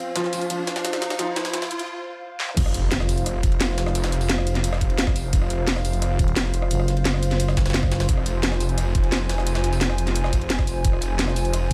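The recording sits in a light digital ambience, and this excerpt is cut from a longer piece of dark, futuristic technical drum and bass at 174 BPM in F phrygian. It opens with a build-up: a deep, moody analog pad holds sustained chords with chorus, 12-bit sampler grit and sidechain pumping, while a riser and impact sound out and a soft, felt-muted upright piano plays brief mellow arpeggios through a low-pass filter and delay, with a filter sweep on it. Two kits run from 0.2 s. An up-front drum and bass kit brings a cracking snare, bright hats, rim clicks, toms and crash. Behind it sits a gritty, pitched-up jungle sampler kit with a high-tuned snare and ride. After a short break and a drum fill, the drop lands at 2.6 s with a knocking electronic kick and a thick, detuned saw bass with chorus, tube saturation and sidechain pumping. From 6.2 to 8.1 s a growling FM bass pushes to the front, returning briefly at 11.7 s, and the drop carries on to the end of the excerpt.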